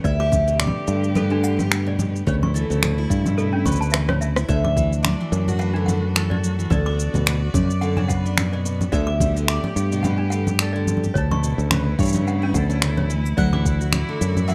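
A delicate, warm folktronica passage in D major at 108 BPM, with a light 16th-note swing, opens with a bright, round mandolin melody over a clanky, bell-like toy piano line that sounds slightly out of tune, both carrying digital delay, while a bowed string quartet holds clear, focused chords with vibrato. Underneath, a picked steel-string acoustic guitar plays full-bodied arpeggios with finger squeak set in the background, a growly, punchy fingered electric bass sits up front, and overdriven electronic percussion of soft kick, shaker, congas, finger snaps and rim click drives the groove with a drum fill at 3.9 seconds. Chords of Gadd9/D, Aadd9/D, Dadd9 and Bmadd9/D circle beneath in a small room with a rough home-demo feel, the kick dropping out at 13.8 seconds of this cut from a longer piece.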